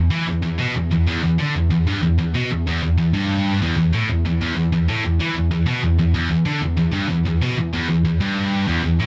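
A lone electric guitar opens this dark, heavy metal fragment and carries it alone for its full 9.1 seconds. The tone is scooped and high-gain, with thick distortion and a bright bite on the picked notes. Double-tracked and placed up front, the guitar stays low in its register, moving between E2 and E3 over a steady, straight pulse. A moderate studio reverb gives the part some room around it. The overall production leans dark and warm, which sets off the guitar's bright edge against a somber backdrop.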